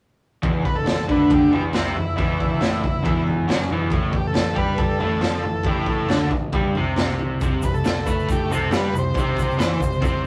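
A straight 4/4 garage rock groove drives this swaggering, gritty excerpt from a longer piece, with a punchy, saturated drum kit of kick, snare and toms and a crunchy, double-tracked overdriven guitar riff up front in a rough rehearsal-room sound, a fuzzy picked electric bass in the background, a buzzy vintage combo organ melody with light vibrato, and a grainy egg shaker joining at 7.4 s as the chords move from E9sus4 to G9sus4 and C5.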